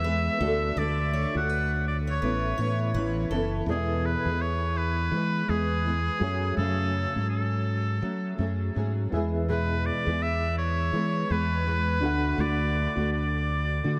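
Swung sixteenths give this easy-going, heartfelt pop excerpt a gentle lilt as a bright, softly attacked oboe with light vibrato carries the melody up front through a diffuse ambient delay, over a growly, punchy fingered electric bass, a dark, double-tracked, fingerpicked classical nylon-string guitar, a reedy electric piano with fast tremolo sitting in the background, and a full-bodied picked steel-string acoustic guitar whose lushly chorused arpeggios stop at 3.5 seconds, in a dreamy mix soaked in huge reverb as the chords move from D and Aadd9 to E and F#madd9.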